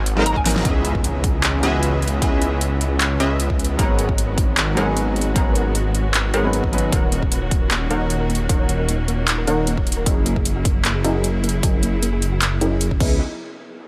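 This emotional, dreamy future bass excerpt opens with an intimate baby grand piano, with audible action noise and dub echo, set in the background alongside a punchy, airy supersaw stab riff colored by cassette tape, a low-pass filter and dub echo, over a thick, chorused detuned saw bass sitting up front. A big-room dance drum kit with a huge overdriven snare, metallic hats, handclaps and crash joins almost at once with a brief fill, while a punchy electronic kick drives the half-time, lightly swung groove and a very quiet, woody mallet-like pluck offers a fleeting melodic touch. From 0.7 seconds a faint electronic impact hits, a bright, vibrato-rich string section holds sustained chords in the background, and filter sweeps begin evolving through both the bass and the supersaw. Sidechain pumping makes the piano, stab, bass, strings and later pluck breathe with the kick, and the harmony drifts through lush minor ninth, eleventh and seventh chords and an F#13. 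The piano drops out at 6.9 seconds, and at 7.0 seconds a dark, tine-like thumb-piano-style pluck takes over with gentle chorused, echoing arpeggios, all wrapped in light reverb.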